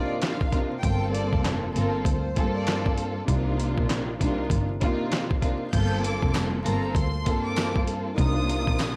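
A swung boom-bap groove at 98 BPM in 4/4 drives this tough, dark hip-hop excerpt in G minor. A gritty, compressed sampler-style kit enters up front at 0.2 seconds with a thumpy kick, fat snare, hi-hat, handclaps and crash, and an intimate bowed double bass with soft attack and airy tone joins at 0.8 seconds. A woody, lush string section carries the accompaniment through cassette-tape colouring beneath an expressive violin section melody full of vibrato and portamento, set in tape echo over chords moving between Cm11 and Gm11, while a distant, jingly tambourine arrives at 6.3 seconds, all framed by a small, dry room with vinyl crackle.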